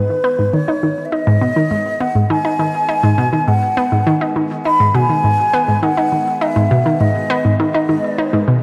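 A steady, straight 4/4 pulse at 102 BPM drives this expansive, cosmic stretch of sequencer-driven space music in G# minor, tuned to A4 = 445 Hz and resting on a single G#m chord. An up-front analog pluck carries the riff with a round, nasal, wave-folded snap treated with chorus and delay, while a thick, detuned unison pad fades in behind it with lush, chorused sustained chords. Above them a pure, hollow concert flute sings the melody with gentle vibrato and delay, all set in a dark production bathed in a wet plate reverb.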